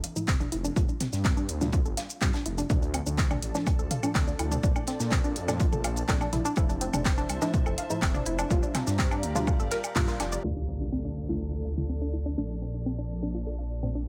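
Dark and cinematic, this melodic techno excerpt at 124 BPM in D minor sets a punchy, tape-warm electronic kick and a layered deep house kit with smooth hats, plus a very quiet acoustic funk kit with a high-tuned snare, beneath a menacing detuned saw bass, lush filter-swept unison pluck arpeggios, muted dub chord stabs with chorus and tape echo, and a bright, morphing wavetable pad that enters at 3.1 s, until the drums fall away by 10.5 s as a background impact lands at 10.4 s over the cycling Fmaj7, Gm7, Dm and Bbmaj7 chords.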